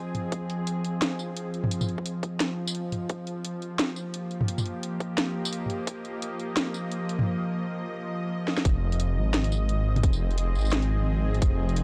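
Dark and heavy, this half-time drum and bass excerpt in F minor at 173 BPM opens with a tense, nasal, string-like drone pulsing under sidechain pumping over Fm7 and Ebadd9. Meanwhile a cracking snare, hi-hat, tambourine and toms build toward a drum fill at 8.5 seconds, joined by a tight electronic kick that drops out at 6 seconds. A deep, rumbling detuned saw bass with tube saturation then arrives for the drop at 8.6 seconds, all captured on a dry, gritty hardware recording with cassette tape character.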